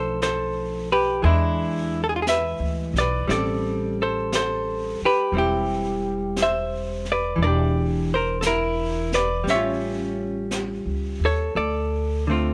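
Romantic and tender, this short excerpt of a slow swung jazz ballad at 58 BPM places a clean, compressed hollow-body electric guitar up front, picking out chords that move from Bm7b5 and E7 through Am7 and Em7b5 to A7b13 and Dm7, over a woody, growly pizzicato upright bass on steel strings, while a distant, roomy brush kit with a high-tuned snare, hi-hat and a rolled-off top joins at 0.2 seconds in a dry, intimate sound.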